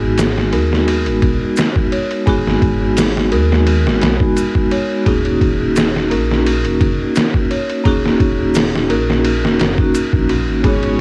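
Cinematic and melancholic, this trip hop excerpt drifts over a loose, lightly swung groove in 4/4, moving from G#m7 to D#m7 at 5.1 seconds. A metallic, ringing vibraphone played with medium mallets carries the accompaniment through tremolo, tape echo and a cassette tint. A delicate, bell-like celesta runs arpeggios above it, set back in the mix with analog delay. Underneath, a dark, rumbling detuned saw bass beats and sustains. From 0.2 seconds a compressed, pitched-down sampler-style drum kit sits up front, overdriven and muffled, with a thumpy kick, medium-tuned snare, hi-hat and ride, while close, dry maracas tick quietly in the background. At 10.6 seconds a smooth, clear violin section with light vibrato slips in on sustained chords, all within a modest room reverb and the soft haze of a home cassette recording.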